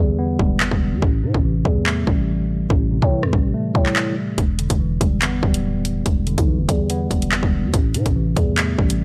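Tense and cold, this drill-style hip hop cut from a longer piece moves at 143 BPM with a half-time feel in E minor, where a mellow, clean tine electric piano sits directly on an Em7 to Am7 progression. A growling, buzzy 808-style bass with a fast attack and decaying tail lies beneath it, and at 0.4 s an up-front electronic drill kit enters through the opening break with a hard-clipped kick, bright hi-hats, handclaps and rim clicks carrying a tape-like warmth. The mix is dry, the drums sitting loudest.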